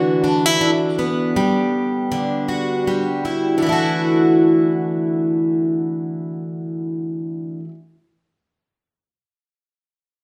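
Pop in D major at 80 BPM, this short, carefree and heartfelt passage features a single picked, plugged-in twelve-string acoustic guitar playing solo from 0.0 to 7.7 seconds, with a gentle 16th-note swing in 4/4. The guitar sits up front with a bright, shimmering, octave-doubled tone and audible finger squeak, moving from Dadd9 to Emadd9/D and returning to Dadd9 at 3.6 seconds. A moderate large-studio reverb gives it an open, auditorium-like feel, as if played live in one room.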